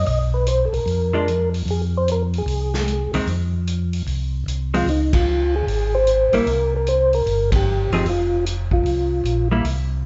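Smoky and bluesy, this 150 BPM soul jazz organ trio excerpt in F minor swings over a mellow, round tonewheel organ bass and a distant, roomy big-band drum kit with a boomy kick, while a soft, flute-like percussive organ carries the melody through a slow rotary speaker and chorus vibrato, a clean, picked hollow-body jazz guitar enters at 1.1 seconds with compressed accompaniment, and band accents hit at 5.1 and 7.5 seconds in a moderate large studio reverb.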